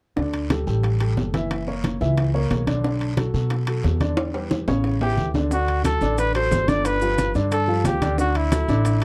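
A warm trumpet takes the solo at 5.0 seconds, up front and played with vibrato in a jazz style, lifting this sunny, sophisticated Afro-Cuban jazz excerpt in D major at a brisk 180 BPM in straight 4/4. Beneath it, a woody, thumpy upright bass played pizzicato on gut strings sits prominently, while an upright piano with a natural, woody tone supplies the accompaniment from the start. The percussion bed mixes bright, thin-skinned congas in the background, very quiet round bongos, raspy guiro, and ringing metal-shelled timbales that enter at 0.3 seconds with a close, dry sound, and a drum fill arrives before the second section begins at 5.5 seconds. Grainy, mellow maracas join at that point, compressed and saturated and tucked behind the band. The harmony moves from Dsus4 through F#7, Bm7 and Em7 to A7, then on to D7, G9 and a closing Dadd9, all framed by light reverb in a dark production.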